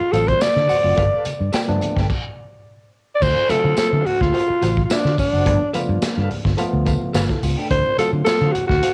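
A breathy, raspy alto saxophone leads this playful, strutting funk excerpt at 107 BPM, soloing over D7#9 and G9 with cassette-tape grit and analog delay until a stop at 2.1 seconds, backed by punchy fingered bass, a clean electric guitar with tremolo, worn and slightly out-of-tune tine electric piano stabs, a saturated breakbeat kit with dark cymbals, distant low-tuned congas and a jingly tambourine, all in a home cassette recording with light reverb.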